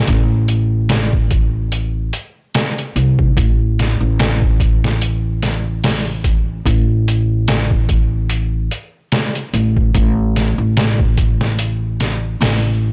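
Trip hop in A minor at 73 BPM, with a lightly swung 16th-note feel and a hypnotic, cinematic mood, cut from a longer piece. A woody, bright pizzicato upright bass with tube saturation sits up front in a low register from the start, joined at 0.1 seconds by a gritty, pitched-down sampler-style drum kit with a thumpy kick, medium-tuned snare, hi-hat and small room ambience. The whole recording is blown-out and overdriven, with little reverb, giving it a dry, crushed character.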